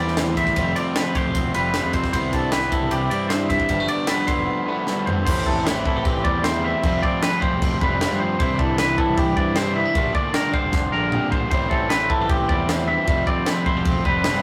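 High, twangy clean electric guitar arpeggios sparkle over a second picked, compressed twangy guitar's accompaniment, a double-tracked crunchy overdriven guitar riff, a growling overdriven fingered bass and a crisp, airy fusion drum kit with a high-tuned snare and tight kick, which comes in at 0.1 s and adds fills at 4.9 and 10.7 s, in this bright, wistful math rock and midwest emo passage at 154 BPM in 4/4, cycling through Am7, Fmaj9, Cmaj9 and G9sus4 before turning to Gm9, with a rough rehearsal-room sound, tube saturation and moderate studio reverb.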